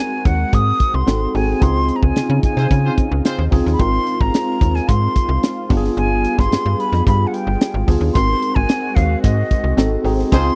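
A straight 4/4 groove at 110 BPM drives this polished 1980s jazz-funk pop excerpt, where a tight funk drum kit with a high-tuned snare, kick, hi-hat and crash, and a snappy FM bass with a metallic attack sit up front from 0.3 seconds, setting a nocturnal, urban mood. An airy concert flute with vibrato carries the melody over a worn, slightly out-of-tune tine electric piano with subtle chorus and a thick, warbling sawtooth pad in the background, moving through chords such as Ab7b9, Dbmaj9 and G7b9. A clear horn section with octave doubling adds a brief second line at 2.6 seconds and again at 10.3 seconds during band accents, captured in a dry, close small-room sound.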